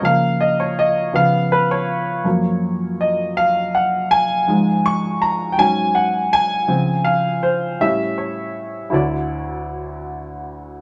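Gospel in a slow, straight 6/8, this reverent and hopeful short cut from a longer piece features a worn, up-front baby grand piano playing solo through rich chords from Db6 through Gbmaj7 and Ab7sus4 to Dbmaj7, then slipping via A7 onto Dmaj9 at 8.9 seconds, all bathed in a wet studio reverb.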